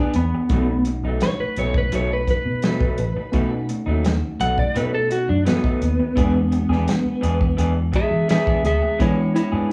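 An electric slide guitar takes the lead from the first moment, soloing up front across the whole 9.7 seconds with a slightly broken-up, compressed tone in this short cut from a longer straight-eighth soul blues piece. The mood is soulful and gritty, moving at 85 BPM in 4/4 in B mixolydian, with the harmony sitting on E7, moving to B7 at 0.5 seconds and returning to E7 at 6.2 seconds. Beneath the slide, a bright, clean tine electric piano plays accompaniment in the background through its built-in speakers, while an electric guitar through a small old amp adds picked, lo-fi stabs. A vintage muted fingered electric bass enters at 0.1 seconds with a round, punchy, foam-muted sound, joined by a dry soul drum kit with a fat snare, tight kick, hi-hat and a rolled-off top, placed up front. The band plays live in one room with small room ambience and a moderate large studio reverb.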